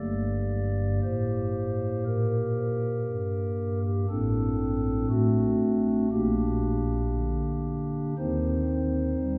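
The recording sits in a reverberant church acoustic with a long tail of about 3.0 seconds, heard from further back in the room, and its top end is rolled off, leaving a dusky, veiled sound. This is a short passage cut from a longer classical chorale-style piece in G minor for solo pipe organ, grave and dark in mood. The organ speaks through stopped flute stops, soft and hollow in tone, with a mellow, romantic voicing that still sits up front, spanning from a deep G1 in the bass up to D5. The tempo hovers around 59 BPM in 4/4, taken with a free, rubato feel. The harmony moves from G minor to D7 over A at 4.1 seconds, then through G minor over B-flat to C minor over E-flat at 8.2 seconds, and the passage breaks off at 9.4 seconds.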